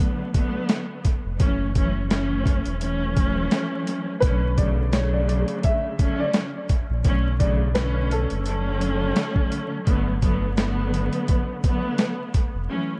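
Boom-bap hip-hop at 85 BPM with a swung, tough yet reflective feel in B minor, cut from a longer piece: a bowed studio string section with vibrato and portamento, colored by cassette tape and dub echo, carries the chords over a gritty, pitched-down sampler drum kit with a thumpy kick and high-tuned snare, while a deep sine sub bass with octave enters at 1.3 seconds and a woody, slightly detuned upright piano with audible action noise and dub echo plays the melody from 4.2 to 9.8 seconds, set in a dry, echo-heavy mix with vinyl crackle and lossy compression artefacts.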